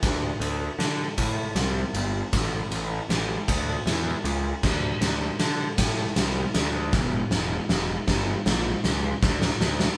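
A live-in-one-room recording with light reverb carries this cathartic, melancholic post-rock passage in 6/8, where a big acoustic rock drum kit with a fat snare, punchy kick, crash and ride cymbals drives a build-up and drum fill across the full 10 seconds, while an up-front, growly fuzz-overdriven picked electric bass ranges from E1 to D3.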